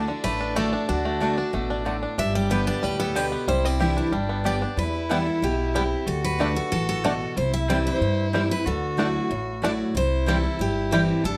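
Bluegrass at a brisk 185 BPM in a straight 4/4, this lively, rustic excerpt is cut from a longer piece and moves from D through G and Cadd9 before turning toward Em, D, C and Dadd9 in its second half, which begins at 4.8 seconds. A bright, up-front picked steel-string acoustic guitar carries the melody, its finger squeak audible, while a smooth, focused fiddle with light vibrato bows a second line beneath it. A second picked acoustic guitar, full-bodied and jumbo-sized, picks out accompaniment across a broad range, and a twangy, percussive banjo played with fingerpicks rolls out arpeggios until 11.0 seconds. Upright bass with gut strings gives a thumpy, woody pizzicato foundation. From 0.6 seconds a mandolin adds double-string stabs from the background, and light reverb surrounds the ensemble.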